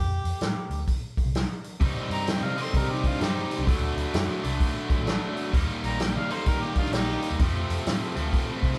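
A clear, close-miked harmonica carries the jazz-inflected melody with vibrato and scooped notes through the overdrive on this heavy, smoky blues rock and southern rock excerpt at 129 BPM with a swung 4/4 feel. A round, dark, foam-muted fingered bass and a punchy, up-front vintage drum kit with a rolled-off top support it, while a sludgy, bright, double-tracked distorted guitar riff enters at 1.8 seconds and a dark, distorted lead guitar line slips in behind at 2.2 seconds over an F, Cm, D, Eb chord cycle, all in the moderate reverb of a band playing live in one room.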